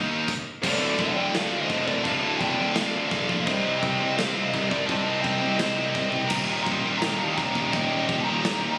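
A dark-toned, high-gain lead guitar carries the melody from 0.6 seconds with digital delay, alongside a second, more recessed lead line, in this dark, heavy metal excerpt at 169 BPM in D phrygian, cut from a longer piece. Beneath them, three bright, distorted rhythm guitars (one overdriven and double-tracked) sit back in the mix playing riffs, while a growly, fuzz-laden picked bass drives the low end and a big acoustic kit, with a punchy kick, medium-tuned snare, toms and sparkling china, crash and splash cymbals, makes a brief stop before settling into a half-time feel, with a fill at 6.1 seconds. The harmony moves from Dm to Cm to Eb, and the sound is dry, as if captured on a phone in the room.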